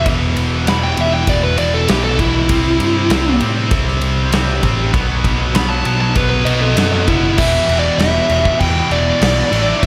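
A small room ambience frames this heavy, menacing hard rock passage, cut from a longer piece, with a dark, high-gain lead guitar sitting up front, carrying distortion and a slapback echo. That lead plays a solo from the start until 7.4 seconds, when a new section begins. Beneath it, three picked, distorted rhythm guitars grind out the riff: a scooped high-gain part and a tight, bright part in the background, and a double-tracked high-gain part kept very quiet. A picked electric bass adds a growly, amped low end. An acoustic rock kit enters at 0.1 seconds in a big room, with a punchy kick, a medium-tuned snare, and bright crash and ride cymbals. The straight 4/4 groove moves through E5, C and B chords before returning to E5.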